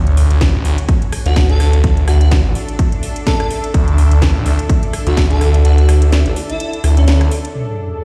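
Bouncy and aggressive, this 8-second bass house excerpt at 126 BPM with a swung sixteenth feel rests on a Dadd9 chord, where a thick, swirling phased saw bass pumps up front against a blurred granular cloud pad, cracking snare, metallic hats and a punchy kick, while an airy, dreamy lead with chorus and dub echo enters at 1.3 s, the kick drops out at 5.6 s, a sub drop arrives for the impact at 7.6 s and a resonant sweeping pad follows at 7.7 s, all in a stone-room reverb.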